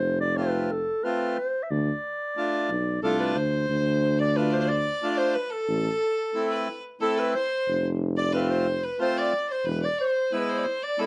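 A mellow clarinet opens this short klezmer excerpt, singing a soulful, bittersweet melody in a classical style up front, while a breathy tuba with soft attack and light vibrato carries the bass line beneath it in a vintage, jazz-inflected manner. Just after the start, at 0.4 seconds, a reedy, hollow accordion joins with up-front accompaniment, and the piece moves at 90 BPM in a straight 3/4 lilt. At 3.0 seconds a single bowed violin adds a second line, its clear, biting tone carrying light vibrato and a smooth top. The harmony travels from F through Dm and Am back to F before settling on E, and the tuba drops out at 9.9 seconds, leaving the other three to close the passage. Light reverb and a dark production give the ensemble an intimate, old-world glow.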